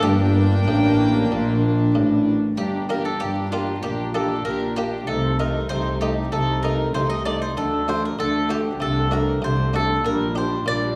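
Lively and festive, this short cut from a baroque-style concerto movement with solo episodes puts a woody, picked mandolin up front on the melody, joined by a very quiet, close violin section high above. A rich, smooth-topped second violin section carries the second line, while a dark, distant viola section and a muted, lute-like buff-stop harpsichord fill in the accompaniment. A reedy cello section and a gut-strung double bass section anchor the bass, all set in a wet recital-hall reverb.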